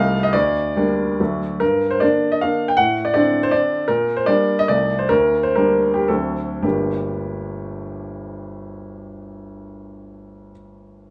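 A solo concert grand piano, vintage and smooth with a deep bass and an up-front presence in a stone room's reverb, plays a nostalgic, capricious romantic classical dance in G minor and 3/4 with dotted rhythms and free rubato between 102 and 168 BPM, slowing from 3.3 to 6.6 seconds before a new section begins as this fragment of a longer piece moves through shifting harmonies to a G minor chord.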